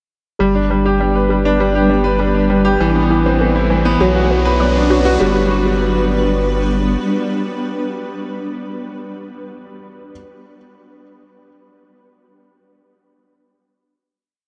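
In a straight 4/4 at 100 BPM, this short, hopeful and tender piano and strings electronica piece in G major opens at 0.4 s with an intimate, boxy grand piano riff up front, carrying delay and audible action noise, over a deep, round analog bass holding sustained roots and a very quiet, warbling lo-fi pluck whose 6-step arpeggio loop drifts against the bar; a cloudy granular pad with built-in reverb and subtle chorus enters at 0.9 s under a filter sweep, and a background electronic riser builds toward the final G chord at 5.2 s, the dreamy mix soaked in huge ambient reverb.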